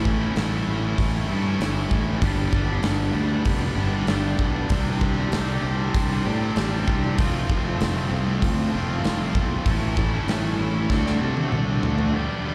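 Heard live through a venue's PA with a touch of club reverb, this sunny, driving classic rock passage at 97 BPM in G mixolydian rides on a huge, pumping arena drum kit with a punchy kick up front, a growly, fuzzed fingered bass, a tight, bright distorted guitar riff and a picked overdriven guitar set in the background, while a silky, very quiet string machine drifts in with slow-attack sustained chords at 3.1 seconds ahead of a drum fill at 10.9 seconds.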